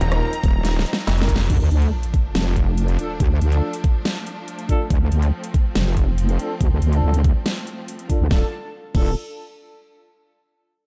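A half-time 4/4 groove at 141 BPM drives this menacing, aggressive wobble dubstep excerpt in D phrygian. An overdriven, knocking electronic kick sits up front, joined by a layered drum kit with a huge snare, rim clicks, crash and metallic hi-hats in small-room ambience, and a drum fill closes out the opening drop. At the opening, a growling, resonant distorted saw bass with a moving notch snarls over an Ebsus2 chord, while a smooth supersaw carries a brief high melody through cassette-tape colour and digital delay until 1.4 seconds. At 1.5 seconds, a very quiet sub drop marks the impact, the harmony settles on D minor, and a heavy, detuned wobble bass with chorus and saturation, present since 0.4 seconds, takes over the low end under a filter sweep. Lush, bowed strings with vibrato hold sustained chords that pump against the sidechain, and mellow brass stabs pass through their own filter sweep and delay, all wrapped in a dark digital ambience.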